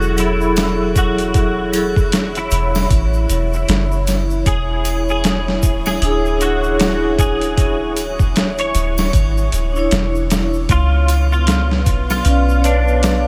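A brooding, dark trip hop excerpt opens with a bright, twangy clean electric guitar melody through ensemble chorus and tape echo, over a ringing hard-mallet vibraphone with tremolo in a boxy small room, a deep, detuned sawtooth pad with chorus and a long release, a round, soft 808-style bass up front, and a close, dry acoustic tube shaker and triangle in the background, before a gritty, overdriven sampler-style drum kit with a thumpy kick and medium-tuned snare joins at 0.2 s, swinging on 16ths as the chords move from F#m9 through E13 to C#7b9 within light reverb and digital ambience.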